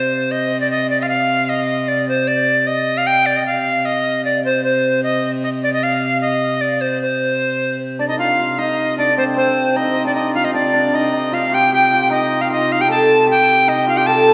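Medieval dance in 3/4 at 153 BPM in C dorian, driving and ancient in mood, cut from a longer piece. A bright, reedy tenor recorder carries the melody up front with an airy, chiffy wooden tone, over a clear, bowed viola da gamba drone on C3 with light vibrato and a ringing gut-string sound. At 8.0 s a shimmering hammered dulcimer adds a second line, and the whole is bathed in a wet concert hall reverb.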